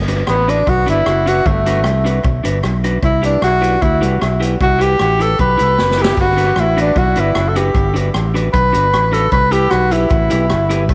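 A straight, bouncy ska groove in 4/4 drives this upbeat excerpt, which is cut from a longer piece. A dark, round fingered electric bass sits up front, and a picked, compressed electric guitar at the edge of break-up fills in the accompaniment. A distant, roomy big-band drum kit swings along on hi-hat, rim click, a medium-tuned snare and a punchy kick, all touched with tape echo, with a short fill at 5.8 seconds. A grainy, vintage cabasa adds a very quiet shimmer underneath. From 0.3 seconds a breathy, whispered tenor saxophone takes the solo melody with a soft attack and light vibrato, intimate and close, its line also carrying tape echo. The harmony alternates between Gmaj7 and Cmaj7, and a moderate echo-chamber reverb surrounds the whole mix, whose top end stays mellow and rounded, rolling off above about 10 kHz.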